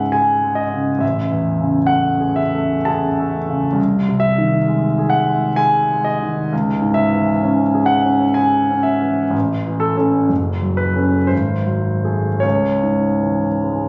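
Drifting in a rubato 3/4 between 50 and 69 BPM, this melancholic, wistful romantic nocturne for solo piano in C# minor is a short fragment cut from a longer piece. A concert grand plays alone from 0.0 to 13.9 seconds, sitting up front with an intimate, polished tone, deep bass, long sustain and audible action noise as it moves from C#m through Amaj7, G#/B#, F#m and G#7b9 before settling back on C#m at 12.4 seconds. Captured on a phone in the room, the sound carries a moderate recital hall reverb and a dulled top end that gives it a warm, close-up character.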